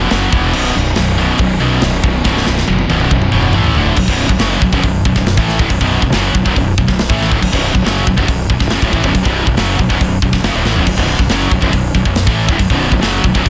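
A tight, up-front metal drum kit drives this epic, heavy metal excerpt at 139 BPM in B minor, its bright cymbals, medium-tuned snare and tight kick set in an airy, big room, with drum fills from 2.3 to 4.0 seconds and again at 10.7 seconds. Alongside it, a round, punchy fuzz bass played with the fingers sits up front, while three picked guitar riffs fill the background: one high-gain and distorted, one scooped, and one sludgy, overdriven and double-tracked. The chords move through power chords before settling on B minor at 4.0 seconds, all under a dense, heavily limited modern master.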